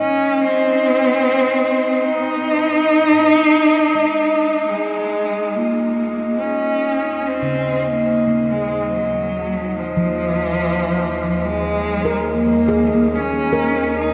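Melancholic and serene, this ambient excerpt at 71 BPM sets an expressive bowed cello melody, rich with vibrato and portamento and bathed in shimmer reverb and delay, over a glassy, ethereal glass harmonica texture that fades out from 5.5 s, while a mellow handpan adds ringing arpeggios from 4.0 s and an earthy bowed double bass section fades in on a low Eb as the harmony moves from Ab to Eb7sus2, all within a vast, echoing cathedral space.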